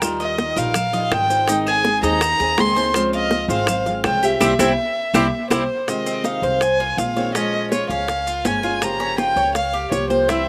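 Fingerpicked flamenco guitar, bright metallic Cuban tres arpeggios on double strings, thumpy pizzicato upright bass, tight high-tuned bongos, thin-skinned congas, grainy maracas and woody claves open this sultry, nostalgic Cuban son and guajira cut in F minor at 164 BPM, with a dark, airy sul tasto violin entering at 0.2 seconds to carry the melody up front with light vibrato and a slapback echo. A drum fill and band accent arrive at 4.4 seconds, the claves drop out at 5.6 seconds, and the music moves into a new section over Fm7, Bbm7 and Gm7b5 chords. The close, dry sound has little reverb and an outdoor intimacy.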